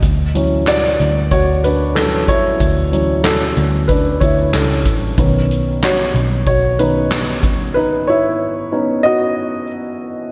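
Piano-driven pop at 93 BPM in straight 4/4, this hopeful, anthemic passage from a longer piece centres on a dark, woody upright piano with audible action noise, sitting up front and moving from Dmaj7 to Badd9 at 5.2 seconds. Beneath it, a vintage, round, punchy foam-muted picked electric bass and a soft-mallet acoustic kit with boomy kick, medium-tuned snare, hi-hat and handclaps carry the groove until the bass drops out at about 7.4 seconds and the drums at 7.6, leaving the piano by itself in the break from 7.8 seconds. A lush hall reverb gives the mix a big arena sound.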